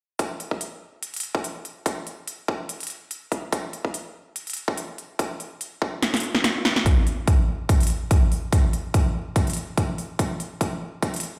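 A half-time dubstep groove at 144 BPM in 4/4, with a slight swing on the sixteenths, runs through this menacing, heavy fragment cut from a longer piece. A punchy, layered electronic kick sits up front beside a big-room dance kit of crisp hi-hats and a punchy snare, both tape-warm and re-recorded in a large stone room played through a big sound system, with light reverb and a high-pass filter thinning the low end. A drum fill at 6.0 seconds leads into a build-up with a filter sweep from 6.9 seconds, and another fill closes it out from 10.2 seconds.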